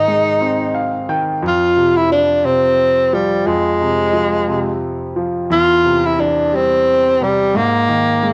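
A swaying, tender pop excerpt in 6/8 at 59 BPM counted in dotted quarters, with a straight feel. A breathy tenor saxophone carries the melody up front from G3 to F4, playing in a jazz style with vibrato, soft attacks and scooped notes. A clear concert grand piano accompanies from E2 to G5, polished and present with a deep bass and short sustain, slipping in a fill from 0.4 to 1.4 seconds. The harmony moves from Ab to Fm at 1.4 seconds, then to C/E at 5.5 seconds before settling on Absus2 at 7.5 seconds. Both instruments carry a cassette tape colour, and a wet small room reverb with a short 0.5-second decay frames the home recording.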